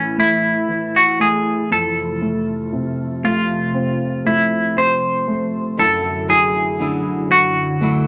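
Tender and heartfelt, this short excerpt from a longer pop ballad moves in a slow, straight 4/4 over chords of A5, F and Dadd9/F#. Up front, a clean, twangy electric guitar carries the melody with a picked attack, its tone shimmering through harmonic tremolo. Beneath it, a grand piano plays a warm accompaniment in its lower register, while a glassy FM pad with slow attack and long release holds ethereal sustained chords, thickened by ensemble chorus and its own built-in reverb. At 5.8 seconds, a fingerpicked flamenco guitar enters with acoustic arpeggios, a touch of finger squeak adding intimacy. A moderate studio reverb gives the whole blend a gentle sense of space.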